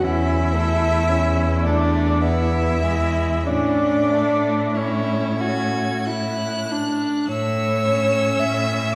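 A string quartet plays together from the opening in a tender, slow romantic classical movement in 3/4, shaped with rubato: a clear first violin carries the high melody with vibrato, a smooth, even second violin sings a lower line, and an intense viola supplies the middle accompaniment. Beneath them, a rich, up-front cello holds the bass with a focused tone and a silky top. The players sit in a wet scoring-stage reverb heard from further back in the room, in a fragment of a longer piece that breaks off at 8.9 seconds.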